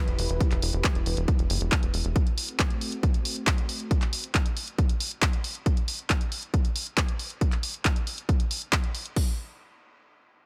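Bittersweet and euphoric, this short cut from a longer uplifting trance piece at 137 BPM sets a lush, warbling detuned unison pad with chorus and sidechain pumping, sustaining chords over Em and F#dim under a filter sweep until 5.6 seconds, against a tight, sawtooth sequencer bass with tube saturation that drives briefly until 2.1 seconds, while a punchy analog drum machine of handclaps and hi-hat and an overdriven house kit with a punchy kick sit up front in a dry mix, the kit carrying on until 9.3 seconds.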